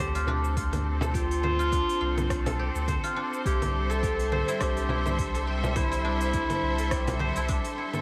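Organic downtempo at 104 BPM in D minor with a lightly swung sixteenth feel and a meditative, mystical mood, this dreamy, reverb-soaked fragment moves from Dm7 to Am7/C as a solo classical-style clarinet carries the melody through tape echo, over biting, vibrato-laden bowed strings and a round sine sub bass that both pump against the sidechain, while a silvery, ringing guzheng plays arpeggios with fingerpicks, a deep electronic kick enters at 0.6 s, a produced deep house kit adds congas, smooth hats, rim click and shaker, and a small, dry frame drum sits in the background.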